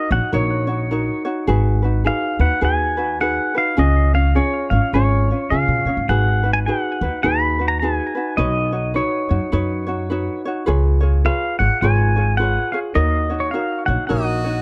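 A lazy swung 4/4 at 104 BPM carries this languid, relaxed Hawaiian excerpt, where a twangy, clean electric pedal steel guitar sings the melody up front with slide, fingerpicks, volume swells and tape echo over a light, fingerpicked acoustic ukulele and a woody pizzicato upright bass, until a distant, roomy jazz-style harmonica with light vibrato and scooped notes slips in at 14.1 seconds, all in a dark, dry production.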